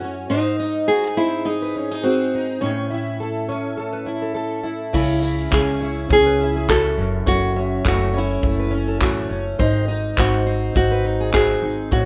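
This rough home-demo mix has a dull top end and a moderate studio reverb, framing a wistful, reflective acoustic pop piece with a light swing. A classical nylon-string guitar carries the melody up front, its finger squeak audible through a digital delay, over a double-tracked, plugged-in steel-string guitar fingerpicking the accompaniment and a full-bodied dreadnought adding quieter arpeggios. At 4.9 seconds a woody pizzicato upright bass and an airy country drum kit enter, with a punchy kick, crash cymbal and handclaps, as the chords move from C#m through F#m7 to G#.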